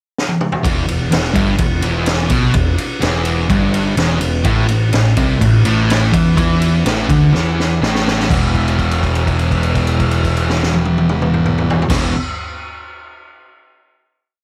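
A straight 4/4 rock groove kicks off this raw, rowdy garage rock piece, with a short drum fill on the pickup before the double-tracked fuzz guitar and overdriven bass enter together at 0.6 seconds. The guitar's distorted single-note riff sits up front, and the punchy bass drives eighth notes that double it beneath a gritty, small-room kit with a high-tuned snare, boomy kick and rolled-off top. A second drum fill leads into a final chord held from 8.3 seconds to the end.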